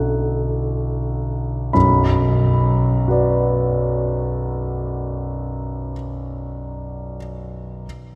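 A lone concert grand piano opens on a rich, extended minor chord, easing to a slower pace over the first 1.7 seconds before settling onto a plain minor chord. This short impressionist classical passage, cut from a longer piece, moves in triple metre with a free, rubato feel that sounds wistful and mysterious. The piano sits up front and sounds clear and polished, spanning deep bass notes up into its upper middle register, with long sustain and the faint, intimate sound of its action audible beneath the notes. A wet cathedral reverb surrounds it, letting each chord ring and hang in the vast space until the piano falls silent at 7.9 seconds.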